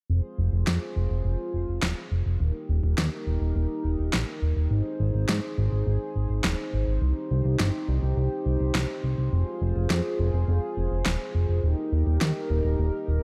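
Nostalgic and driving, this synthwave passage in F minor at 104 BPM sets a saturated, detuned analog bass up front beneath a shimmering, chorused pulse-width pad sustaining chords through Fm, Eb, Ab and Cm, while a layered electronic snare drum enters at 0.7 seconds, the whole bathed in light reverb and a dark production.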